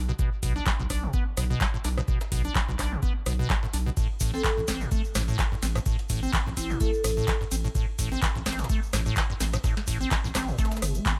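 Acid house at 127 BPM in 4/4, this short cut from a longer piece feels driving and raw, with a light swing on the sixteenths over a Bm to Am change. A squelchy, resonant square-wave acid bass carries the riff up front, its plucky filtered notes saturated through tube warmth, thickened with lush chorus, trailed by digital delay and pumping with sidechain compression. Beneath it, a deep sine sub bass holds the low end with sustained, saturated weight and the same sidechain pump. The drums stack an overdriven electronic kick, a booming analog drum machine with crisp snare, metallic hats, handclaps, rim clicks, ride and toms, and a very quiet, gritty, pitched-up breakbeat kit of hi-hat, shaker and snare, all re-recorded in a small room. From 4.0 s a grainy, bright egg shaker sits in the background, and at 4.3 s a hard-mallet vibraphone rings out a metallic melody between E4 and A4 with tape echo in a boxy room until 7.3 s. 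A digital ambience wraps the whole mix.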